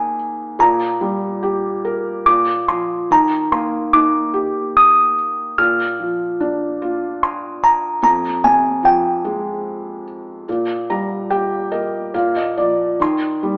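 A delicate, tinkling music box carries the melody of this tender children's lullaby, its plucked line sitting high and up front, with the vintage, band-limited character of a large box. Beneath it, a felt-muted upright piano supplies soft, mellow accompaniment from the very start, intimate and natural, with audible action noise. The piece moves in a gentle 3/4 at around 73 BPM in Eb major, played with a rubato feel that gives it an innocent, unhurried sway. From 10.5 seconds the felt piano adds a brief fill that carries through to 13.0 seconds, before the harmony settles back on Eb. The two players sound as if they are together in a stone room with moderate reverb, and the whole recording has an AM radio quality. This short passage is cut from a longer piece and runs 13.6 seconds.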